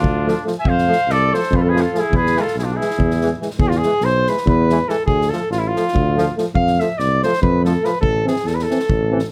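Distant, roomy horns under light reverb meet an airy, polished drum kit in this fiery, bittersweet Balkan brass band excerpt in E phrygian dominant, driving at 284 BPM in a straight 7/8. Up front, a flugelhorn with light vibrato carries the melody. A warm trumpet plays a second line until 3.4 s, and a smooth-topped tuba anchors the bass beside a boomy kick and a medium-tuned snare. From 0.3 s a bright trombone and a mellow euphonium add accompaniment over chords moving from Dm through F to E, later landing on Am.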